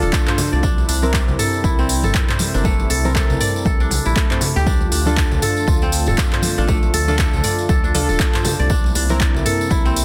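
An earthy afro house excerpt at 119 BPM in D minor opens at once with a soft, warbling analog pad holding sustained chords in the background, alongside fingerpicked kora arpeggios that ring out crisp and bright through a vintage 12-bit sampler grit and tape echo. Detuned analog keys add decaying stabs with a filter sweep, chorus and tape echo, while a round, dark analog bass anchors the low end, and the pad, kora, keys and bass all breathe with sidechain pumping. Congas sit in the background with a band-limited, vintage tone beside a jingly tambourine, and from 0.1 s a deep house kit with smooth hats, handclaps and toms arrives with a punchy electronic kick, both re-recorded in a small room. The groove swings its sixteenths in 4/4 as the harmony moves between Dm and C7. Light reverb surrounds a dense, heavily limited modern master.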